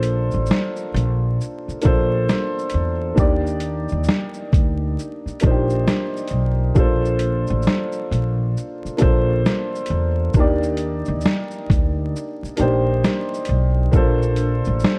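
Vinyl crackle and a light, small-room reverb give this short lo-fi hip hop cut from a longer piece a dark, cosy and mellow sound. A dark upright piano carries the accompaniment throughout, its worn, slightly detuned and boxy tone lingering on long sustain, with audible action noise lending it an intimate feel. Beneath it, a pizzicato upright bass on steel strings sounds woody and growly, sitting up front until it stops at 14.8 seconds. The boom bap sampler-style kit is compressed, pitched down and gritty, with a thumpy kick, a medium-tuned snare, hi-hat and shaker, all swung on the sixteenths. The harmony drifts gently between Bbmaj9 and Ebmaj7, returning to Bbmaj9 at 13.9 seconds.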